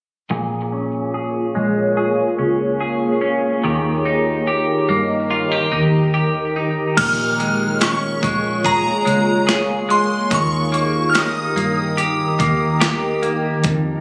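A slow-attack, granular pad of sustained chords shimmers through this melancholic, ethereal dream pop excerpt at 72 BPM in Bb dorian, coloured by chorus and phaser as a filter sweep moves through the opening seconds, while a bright, clean semi-hollow electric guitar arpeggiates over a dark, foam-muted fingered bass from 0.3 seconds. At 7.0 seconds a warbling FM bell with tape echo adds a vintage melody high above, and a gated 80s drum machine enters with a thumpy kick and gated reverb snare. The mix sits in a moderate concert hall reverb, captured on a phone in the room.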